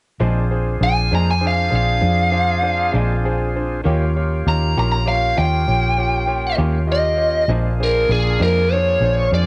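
A slow 12/8 blues at 66 BPM in Bb mixolydian, this laid-back, rollicking excerpt from a longer piece moves from Bb7 to Eb7 and back, with a round, foam-muted electric bass up front, a brilliant concert grand piano, a dark, slightly broken-up background guitar with tremolo, and a gritty overdriven tonewheel organ with key click and slow rotary speaker holding sustained chords, while a biting overdriven lead guitar with cassette tape coloring enters at 0.8 s to carry the melody, all captured as a home cassette recording with light reverb.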